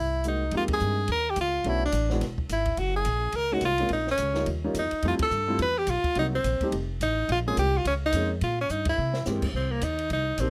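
Light reverb frames this short cut from a longer piece, with the tenor saxophone and upright bass sitting up front in the mix. It is moody, swinging small-group jazz in the swing and bop vein, the saxophone carrying the melody from the first moment with an edgy, forceful tone, punchy attack and scooped notes. The pizzicato bass, woody and steel-strung, starts alongside it, and the warm concert grand piano and compact cocktail drum kit join a moment later, the piano sounding intimate and natural with deep bass and audible action noise. The drums are dry and acoustic, with dark cymbals, a high-tuned snare and a punchy kick, and the band strikes accents together at 0.7, 5.2 and 8.8 seconds, with a drum fill near the end. Underneath, the harmony keeps shifting, from Fm11 through Bm7 and Eb9 to Fmaj9, before settling on Cm7.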